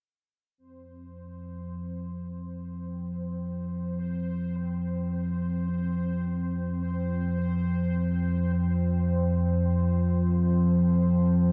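This dark ambient drone piece moves in free time with an ominous mood, and this is a fragment cut from a longer work. A bubbling stepped-filter texture fades in first at 0.6 seconds, its resonant sawtooth tone shifting through random filter steps with a soft attack and chorus. At 1.1 seconds a deep, rumbling drone fades in and sits up front, a warbling, wave-folded blend of triangle, sawtooth and sine with a vintage character, slow attack and long release, thickened by lush chorus. The mellow texture rides well beneath the drone in the mix, and both parts carry their own built-in reverb and sustain to the end at 11.5 seconds. A huge ambient space with a long tail surrounds the sound, and the production stays dark and warm throughout.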